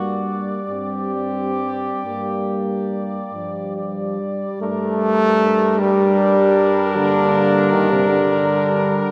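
A slow, hymn-like classical piece for brass band opens on a G minor chord, with every part sounding together from the start in a solemn, elegiac mood. Moving in a rubato 12/8 at roughly 44-55 BPM counted in dotted quarters, the cornet carries the melody with a light vibrato and a punchy edge, while the close-miked flugelhorn sings a second line beneath it. A solo trombone sits up front in the accompaniment, supported by a tight trombone section with light vibrato placed in the background. The tuba anchors the bass on a low G, sounding distant and roomy with its own light vibrato. The brass blooms in the reverberant acoustic of a church or concert hall, and the passage moves from one section into another at 4.6 seconds before this short cut from a longer piece ends at 9.1 seconds.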